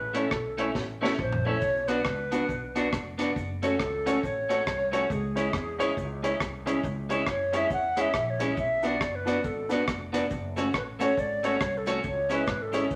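A bright, airy alto flute opens this driving, energetic ska passage over a woody, dark pizzicato upright bass, with clean picked electric guitar, a slightly detuned upright piano with short sustain on stabs, and a deep reggae drum kit arriving almost at once. The flute takes a solo that runs the full length of the passage, sitting up front with vibrato, tongued notes and lifted highs. The drums sound dry and smooth, with a high-tuned snare, tight kick and a rolled-off top, and they play a fill from 0.8 to 1.6 seconds. At 1.6 seconds a grainy cabasa enters, close and tucked into the background, carrying a dub echo. The swung eighths give the groove a loping bounce as the harmony moves through A, Bm, F#m and C#m, all held together by a wet studio reverb.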